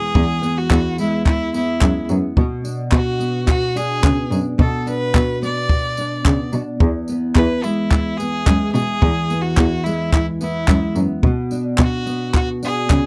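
A dry, close recording with the intimate feel of a 1970s studio and very little room sound opens this short, sunny acoustic pop excerpt in E mixolydian, moving at an easy-going 108 BPM in a straight 4/4. A double-tracked nylon-string guitar sits up front with a woody, full-bodied tone from old strings, fingerpicked in a classical manner across a range from E2 to F#4. Above it, a clear violin carries the melody between E4 and D5, its bowed line biting and intense with vibrato. From 0.2 seconds a muted cello plays the bass, bowed con sordino with a veiled, nasal quality and a soft attack. A compact cocktail drum kit, also entering at 0.2 seconds, adds handclaps, tambourine and a punchy kick, sounding natural and close. The harmony alternates between E and Bm throughout.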